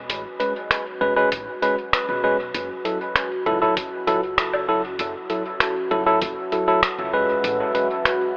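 A clean, up-front tine electric piano plays dub-echoed stabs over a deep, meditative ambient dub groove at 98 BPM in F# dorian, moving between a rootless Amaj9 and F#m7. Around it sit a dark, detuned sawtooth pad with chorus and slow-attack sustained chords, a woody pizzicato upright bass, and a muffled, tape-warm sampler-style kit of finger snaps, hi-hat and woodblock sent through dub echo, while a pitched-down, thumpy electronic kick plays from 1.3 to 6.3 seconds. The whole short passage, cut from a longer piece, is bathed in a huge ambient reverb and filtered to a narrow telephone-like tone.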